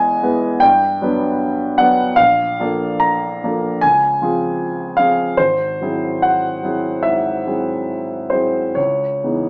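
A grand piano carries this short fragment alone, its tone warm, polished and present, set up front in the sound. The style is impressionist classical, unhurried and wistful, with a hazy mood and a freely flowing rubato over a 4/4 metre. The harmony drifts through lush major-seventh chords, from Emaj7 to Gmaj7, A#maj7 and C#maj7. A G#aug7 arrives at 5.4 seconds before settling on C#m9 at 8.8 seconds. The piano ranges from deep bass notes up into its upper register, tuned slightly high to A4 = 442 Hz, and a light reverb sits around it with a small-speaker character to the sound.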